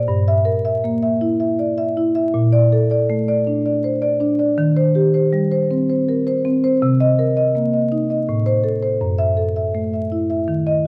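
Hypnotic and flowing, this short fragment of a longer contemporary classical piece for solo marimba moves in a rubato 3/4 around 80 BPM, its harmony drifting from Gm6 through Bbmaj7, Eb6 and Cm7 toward Am and F#m7. The marimba, played with soft mallets, sits up front with a mellow, round tone spanning F#2 to E5. A dark production, vinyl crackle and the lush 1.6-second tail of a recital hall lend the roughly 11 seconds a dusky, enveloping glow.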